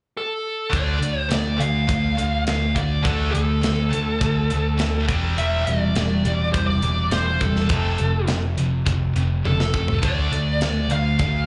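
A dark, overdriven lead guitar carries the melody from 0.2 s with slapback echo and analog delay, joined at 0.7 s by a bright, double-tracked high-gain riff guitar, a growly, punchy overdriven bass and a tight metal drum kit with a drum fill at 9.4 s, as this menacing, heavy hard rock excerpt moves through Dm, C/E and F with the muffled sound of a live club gig heard through the venue's PA.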